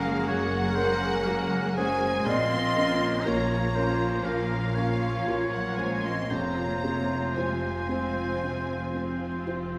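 A rubato 4/4 pulse at around 57-61 BPM carries this uplifting, tender cinematic orchestral excerpt through Gbadd9, Bbm and Fm. An intense, lush violin section sings the high melody while a clear, close-miked solo oboe, pure background flutes and a very quiet, focused second violin section weave supporting lines. A felt-muted upright piano with audible action noise, a very quiet viola section with expressive portamento and soft-attack French horns in warm sustained chords fill the accompaniment, and smooth cellos and rich double basses anchor the bass. All of it sits in the wet reverb of a church or concert hall.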